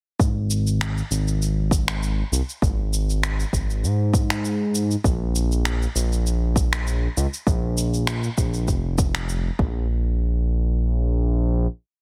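This short organic downtempo piece opens at 0.2 s with a kick, a shaker with finger snaps, and a synth bass all at once, settling into an earthy, warm groove at 99 BPM in 4/4 with a slight swing on the sixteenths. The smooth sawtooth-and-square bass glides between notes with portamento, its detuned, sustained tone carrying a dub-style line that sits up front in the mix. The deep, layered electronic kick is overdriven and also placed up front, re-recorded in a large room. Behind it, a quieter tape-toned shaker and softly clipped snaps build an organic layered beat. The percussion stops by 9.7 s, and the gliding bass holds through the final hit until 11.7 s. The sound is dry, with a dense, heavily limited modern master.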